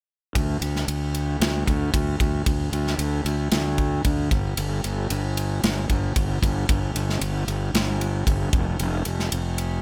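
A dry, up-front sound frames this driving, aggressive hard rock fragment in D minor at 114 BPM, where a growly, overdriven fuzz bass played with the fingers sits low between F1 and D2 alongside a big acoustic rock kit of punchy kick, medium-tuned snare and bright ride cymbal, both starting at 0.4 seconds, with the drums stopping at 9.7 seconds and the bass at 9.8.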